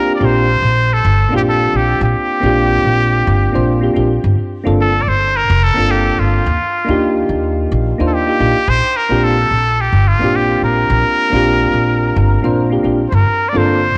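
Blissful and relaxed, this sunset chillout passage in Bb major moves at 108 BPM in 4/4 with a gentle 16th-note swing, and it is cut from a longer piece. A trumpet with a straight mute carries the melody from the start, its nasal, clear tone marked by vibrato and scooped notes in a jazz style, roughened by vintage 12-bit sampler grit and trailed by tape echo. Soft electric-piano-like synth keys supply round, mellow, detuned chords with chorus and their own tape echo, moving through Bb69, Gm11 and Ebmaj9, returning to Bb69 and then moving to Gm11 once more. A woody, pizzicato upright bass joins at 0.2 seconds and sits up front with the other parts. A moderate, lush hall reverb surrounds the trio, and the whole recording has the worn, warbling character of old cassette tape, with a wavering drift in pitch.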